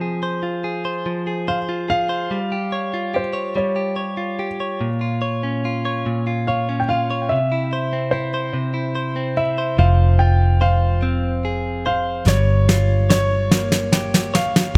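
In a slow, straight 6/8 at 48 BPM, this aching, melancholic pop ballad in F harmonic minor, cut from a longer piece, opens on a clean, compressed, direct-recorded electric guitar picking its way through Fm, Db(#11)/G, Bbm and C; an intimate concert grand piano with audible action noise carries the melody with delay from 1.5 s, a dark, round, foam-muted fingered electric bass arrives at 9.8 s, and a soft brush kit with a fat snare and punchy kick plays a fill from 12.3 s over a light small-room ambience.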